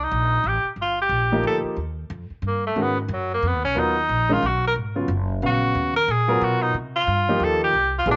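A clear tenor saxophone and a pizzicato upright bass begin together in this jazz waltz, a spiritual, searching fragment cut from a longer piece at a brisk 181 BPM in 3/4 with a light swing on the eighths. The saxophone carries the melody as a solo from the first moment, its vintage tone marked by light vibrato and scooped notes, while the woody, growly bass sits up front underneath. At 1.3 seconds a warm grand piano enters with accompaniment, filling out the harmony as it moves from a rootless Cm11 to Abm11 at 2.8 seconds and back to Cm11 at 6.7 seconds. A moderate spring reverb and small room ambience give the parts a close, intimate setting, and the top end is softly rolled off. All three instruments play through to the cut at 8.2 seconds.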